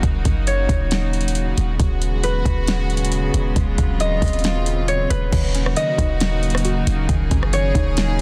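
Melancholic and hazy, this short atmospheric cloud-rap cut rides a half-time groove, with an electronic drum kit of soft kick, fat snare, metallic hats, rim clicks and crash sitting up front beside a deep, boomy 808-style sine bass. A ringing, fingerpicked concert harp carries the melody through low-pass filtering and tape echo, while a clear, floating bowed string section holds sustained chords that pump against the sidechain over a move from Ebm7 to Db7sus4/Eb. A very quiet electronic swell sounds from 4.0 to 5.3 seconds, and at 5.3 seconds a hollow, detuned square-wave pluck slips into the background with chorused, mellow arpeggios, all set in digital ambience and a dense, heavily limited modern master.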